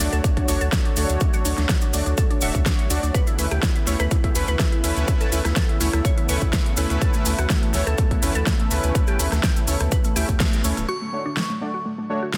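A punchy, up-front electronic kick drives this expansive, uplifting progressive house excerpt, joined by a big-room kit with a huge overdriven snare and metallic hats, a grainy cabasa in the background, a thick saturated sub bass, a lush detuned pad holding sustained chords, smooth echoing supersaw stabs and crystalline wavetable pluck arpeggios, with the bass and synths all pumping under sidechain, until a band accent at 10.4 s gives way to a filter sweep on the arpeggios and a brief glassy FM bell melody from 10.9 s.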